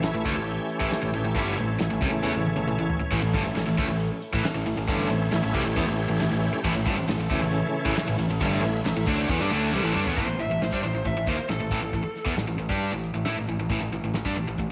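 A wet echo-chamber ambience wraps this confident, swaggering classic rock cut from a longer piece, driving at 136 BPM in A mixolydian, as a shouting tonewheel organ with slow rotary speaker and chorus vibrato solos in sustained chords over an up-front cranked stack guitar riff, a hollow-body overdriven semi-hollow guitar, a fuzz fingered electric bass and a damped 70s drum kit with a tight kick and rolled-off top. From 3.1 s a shimmering, octave-doubled plugged-in twelve-string acoustic guitar and a very quiet, double-tracked thick fuzz guitar join, with crisp group handclaps entering at 3.6 s, before a drum fill leads into a new section at 10.2 s where the organ drops out and an overdriven slide guitar played with fingerpicks takes a brief second line over an A5 chord.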